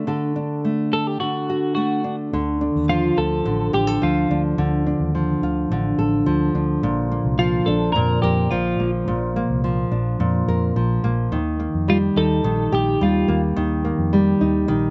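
Pop at 107 BPM, tender and reflective, where a woody, fingerpicked nylon-string guitar with old strings carries the accompaniment from the start, a bright, twangy twelve-string electric guitar picks out a clean, compressed melody up front from 0.9 seconds, and a dark, round, foam-muted vintage electric bass enters at 2.3 seconds as the chords move through D, Dm, Bb and Eb, all in a dry outdoor sound with a dulled top end.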